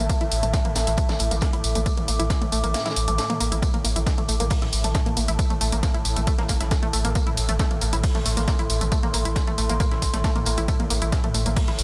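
Dark and industrial, this driving peak-time techno excerpt in A phrygian runs at 136 BPM in a straight 4/4, built on a punchy, overdriven electronic kick that drops out from 2.7 to 3.6 seconds, a layered techno kit of hi-hat, ride, tambourine and toms re-recorded in a large room, a dry, dark acoustic reggae kit with a high-tuned snare set back in the mix, a round sine sub bass, a tight detuned sawtooth-and-square synth riff with a plucky filter and chorus, a swarming granular drone, and a warbling, nostalgic lo-fi pad, with sidechain pumping on the bass, riff, drone and pad under light reverb.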